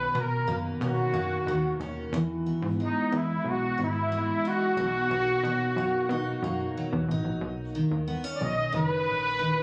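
Captured on a phone in a small room, this short passage carries light reverb and a studio ambience that suit its hazy, nostalgic mood. It is indie bedroom pop in B major at 91 BPM in a straight 4/4, cut from a longer piece. A breathy trumpet with a soft attack and light vibrato carries the melody up front, its whispered, intimate tone wrapped in ensemble chorus and tape echo, and it takes a solo from 7.4 s. Beneath it, a full-bodied picked steel-string acoustic guitar plays the accompaniment through a lush chorus with a warbly pitch drift. A punchy, funky analog bass with a wave-folded filter pluck, fast attack and decaying notes anchors the low end. The harmony moves from Bmaj9 through Emaj7 and Bmaj7 before returning to Bmaj9 at 7.4 s.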